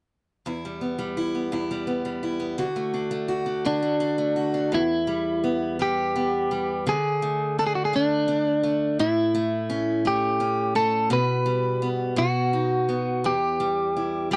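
A dry, close 1970s-style studio sound with light reverb frames this aching, dramatic pop excerpt in 6/8. A bright, picked acoustic archtop guitar sits up front from 0.5 seconds, with finger squeaks audible as it moves from Em to D, then through A, G/B and B back to Em. At 3.7 seconds a clean, compressed electric guitar enters up front with the melody, its tone warm, and both guitars play on until the piece cuts off at 14.4 seconds.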